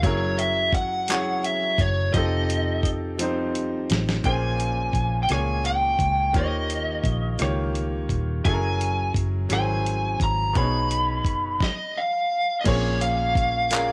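A dry, close sound with little reverb and a faint smear of lossy compression opens this short cut from a longer slow six-eight R&B piece, moving at 57 BPM with a yearning, late-night mood. Out front, a lead guitar through a small cranked amp carries the melody in a high register, its picked, overdriven tone heated and given a slapback echo. A clear but slightly boxy grand piano sits equally forward with the accompaniment, voicing rich ninth chords such as Gb9, F9, Bbm9 and Eb9. Underneath, a vintage foam-muted fingered electric bass gives a dark, round and punchy low end, while a dusty, gritty sampler-style kit of thumpy kick, fat snare, hi-hat, rim click, handclaps and crash sits up front with compressed weight. A drum fill from 3.2 to 4.2 seconds leads into a new passage, and the opening material returns at 12.7 seconds, settling on Bbm7.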